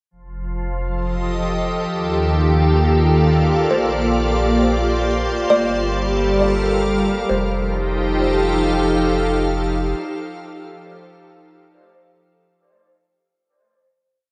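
A warm sub bass opens this brief ambient piece at 0.1 s, its round, sine-like tone holding sustained roots beneath a soft, organ-like pad that enters at 0.5 s. The mood is weightless and peaceful, moving at a slow 67 BPM in 4/4 in F mixolydian, with chords drifting from F9 through Ebmaj9#11, Bb6 and Gm9 before settling back on F9. The pad sits up front, pure and bright yet slightly detuned, with a slow attack, long release, ensemble chorus and its own reverb giving the slowly shifting chords a gentle shimmer. At 3.7 s a kalimba enters in the background with scattered, woody thumbnail plucks, its hollow, vintage, band-limited sound trailing into a diffuse ambient delay. The whole mix is soaked in plate reverb, giving it a dreamy haze as the final F9 chord rings out from 7.3 s.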